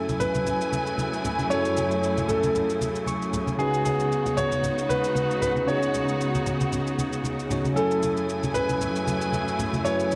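A late-night, deep amapiano excerpt opens at once with a clear, intimate concert grand piano carrying the melody, its audible action noise and long sustain coloured by cassette tape and analog delay. Alongside it, a bell-like tine electric piano supplies bright, clean accompaniment, while a lush, bowed studio string section holds sustained chords with vibrato and a smooth top, sitting up front in the mix. Just after the start, close and dry congas with a thin, low-tuned skin join a gritty, pitched-down shaker with a compressed, sampler-style character, the groove carrying a light swing. The electric piano steps forward with a fill from 2.8 to 3.6 seconds, and a break arrives between 6.7 and 7.8 seconds before the harmony settles back onto F#m7 after a turn to C#9sus4. The whole carries the character of a home cassette recording, with a small room ambience around it.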